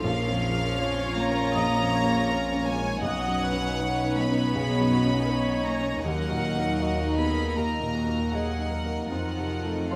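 A rubato 4/4 pulse around 80 BPM carries this moving, bittersweet cinematic excerpt, where a clear, floating violin section sings the melody over a second violin line with light vibrato, a dark, woody viola section, a soft felt-muted upright piano in the background, very quiet dark French horn chords, ringing harp arpeggios, and bowed cello and double bass sections holding the bass, all through moderate scoring-stage reverb as the chords move from A#m through Badd9 and D#m to F7 at 9.1 seconds.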